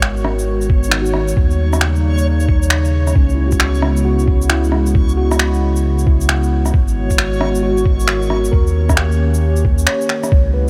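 Rainy and melancholic, this future garage excerpt at 134 BPM swings its 16ths as a warbly, detuned tape-like pad with chorus and sidechain pumping sustains G#m7, D#7 and C#m7 chords over a round sine sub bass, up-front finger snaps, shaker and rim click, and a faint reversed granular swell, before a clean tine electric piano with 12-bit sampler grit and digital delay arrives at 0.7 s alongside a muffled, overdriven, pitched-down kick.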